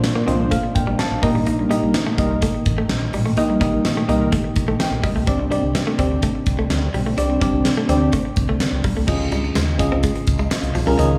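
A glossy, uplifting 1980s-style pop excerpt at 126 BPM in a small room with light studio reverb, where a huge arena drum kit with gated reverb, a fat snare and a punchy kick drives the groove alongside a round, dark fretless bass, a warbling vintage FM electric piano that opens with a fill, a clean, scooped guitar riff through analog chorus and digital delay, brassy detuned synth stabs in the background until 8.1 seconds, a shimmering, ethereal pad, and a very quiet jingly tambourine entering at 9.1 seconds as the chords move from Bbadd9 through Eb and Csus2 to Dbadd9.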